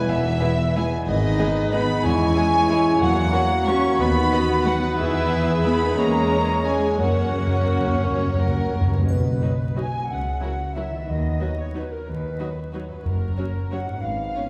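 Heard from further back in a reverberant concert hall through a layer of vinyl crackle, this elegant, festive orchestral ballroom waltz in B major sways with rubato at 163-198 BPM as a warm, bowed chamber violin section carries the melody over mellow hollow flutes, a clear oboe, a dark distant clarinet, a dark bassoon, very quiet sustained French horns, ringing harp arpeggios, a background line from dark studio violins, viola accompaniment, and a bass of cellos and rich double basses, while close timpani with calf heads fill from 7.0 s and a faint triangle sounds at 9.1 s as the oboe, clarinet, bassoon and horns fall away.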